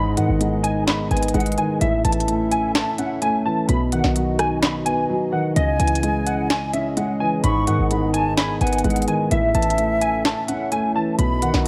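This eerie, brooding trap excerpt at 128 BPM in a half-time feel opens on a clean, fingered electric guitar melody with ensemble chorus and delay, set over a boxy grand piano with deep bass and a nasal, detuned analog pad with chorus. A punchy, tight 808-style bass moves with them through G#m, A, B and C#madd9. The up-front electronic trap kit, with a sharp snare, crisp hats, handclaps and rim clicks, enters at 0.2 seconds and drops out briefly at 5.1 seconds, returning at 5.6 seconds as an airy silver flute with vibrato and delay adds a second line, all within a light reverb.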